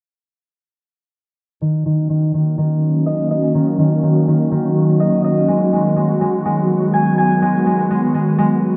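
A bright, ringing concert harp opens at 1.6 s with fingerpicked arpeggios through tape echo, joined at 2.4 s by an ethereal, airy pad of detuned sawtooth chords with a slow attack and ensemble chorus, as a filter sweep runs across this melancholic half-time hip hop fragment moving from Ebm7 to Abm7 in a dry, gritty recording with light studio reverb.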